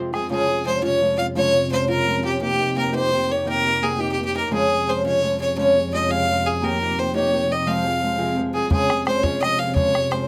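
A boxy, woody fingerpicked acoustic guitar with old strings and a lush, dark string-section drone open this spirited, driving Celtic jig in 6/8 at 114 BPM, moving through Db, Eb and F minor chords. An intense, clear fiddle carries the melody up front with light vibrato, while an open, boomy bodhran sounds briefly at 0.1 seconds and returns at 8.7 seconds as the opening section begins again. Close, detailed microphones and light reverb frame this excerpt from a longer piece.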